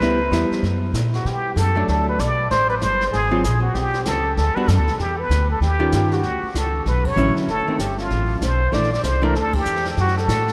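Small-group swing-and-bop jazz, playful and swinging at 193 BPM in D major, with a bright, breathy plunger-muted trumpet carrying the melody up front with wah-wah and light vibrato, a dark, clean hollow-body archtop guitar comping until 9.3 seconds, a woody, thumpy pizzicato upright bass, and a distant brush kit with dark cymbals and a punchy kick, all bathed in a vast, echoing cathedral reverb as the band hits accents at 7.0 and 9.5 seconds in this short cut from a longer piece.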